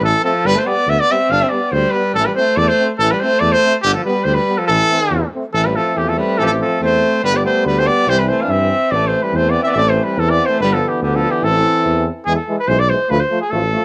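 A light reverb surrounds this restless, bittersweet Balkan folk brass passage, cut from a longer piece and moving at 142 BPM in a straight 2/4 in A minor. A roomy trumpet carries the melody up front while a clear alto saxophone with vibrato plays a smooth second line until 12.1 s, and a mellow, tube-saturated tuba holds the bass beneath a clear euphonium and trombone accompanying in the background. The harmony rocks between G and A minor with a brief move to C, then turns to E and D minor from 12.3 s.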